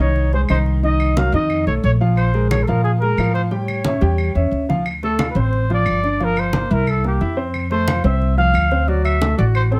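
Sultry and sophisticated, this brief fragment of Afro-Cuban jazz moves at 179 BPM in straight 4/4, drifting through shifting chords before settling into D minor at 4.9 s. A dark, distant trumpet solos with light vibrato, soft attacks and scooped notes bathed in plate reverb, over a warm, open baby grand piano with long sustain and a woody pizzicato upright bass, both up front. Bright, damped, low-tuned congas, compressed and saturated, sit in the background alongside claves heard from afar in a large room.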